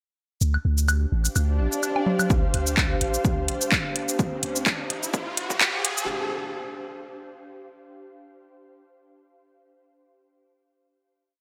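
This short minimal techno piece runs at 127 BPM in 4/4 with a light 16th-note swing, sitting in D minor on a single Dm chord with a clinical, sparse mood. From 0.4 seconds an overdriven house kit lays down programmed metallic hats, cabasa and a clapped backbeat, joined by a deep, punchy sine sub bass with a pitch-drop attack, tube saturation and sidechain pumping, playing a syncopated riff up front. Analog-flavoured woodblock and low conga clicks and blips in cross rhythm run through a digital delay until 2.3 seconds, when the intro gives way to a build and an overdriven four-on-the-floor electronic kick enters. An ethereal, airy pad of detuned triangle and sawtooth voices with a noise layer fades in slowly from 1.0 seconds, its mellow, slowly shifting chords coloured by ensemble chorus, built-in reverb and pumping. A swell from 1.5 seconds leads into the build, which transition effects then carry with a filter sweep and a riser, all set in a moderate digital room ambience.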